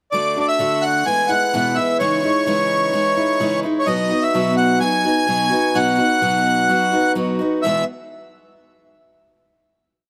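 A light reverb frames an up-front sound for this short, complete rock piece with an open-road feel, built as a pre-chorus that resolves onto a final E chord at 7.6 seconds. A bright, boxy picked steel-string acoustic guitar carries the accompaniment with folk strumming in open chord shapes, moving through D, E, C#madd9 and B. Over it, a reedy, full accordion plays a motif-based melody in song-like phrases.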